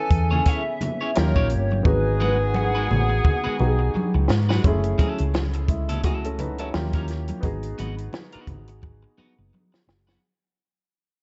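A hollow, woody square-wave lead with chorus and tape echo carries the melody over a worn baby grand piano and loose, vibrato-laden jazz horn stabs, and both the lead and the horns fall away at 4.3 seconds. Beneath them, a round, amped hollow-body bass and a dry cocktail kit with a punchy kick and high-tuned snare sit up front, while a slightly broken-up picked guitar riff adds color and ringing, distant congas play in the background. This silky, cinematic 1970s-style soul passage has a dark, warm production with light studio reverb, features drum fills, and fades out from 4.6 seconds to the end of the cut.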